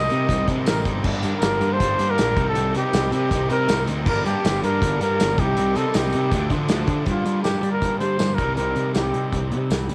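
A breathy, whispered trumpet carries the melody up front with vibrato over a moody, bittersweet indie rock groove, where a punchy fuzz bass and a loose small-room drum kit with dark cymbals and tambourine drive beneath two overdriven guitar riffs (a bright semi-hollow one in the background and a very quiet crunchy one) while a mellow, vintage string-machine viola pad sustains until 7.1 seconds, all in a lightly reverberant home cassette recording cut from a longer piece.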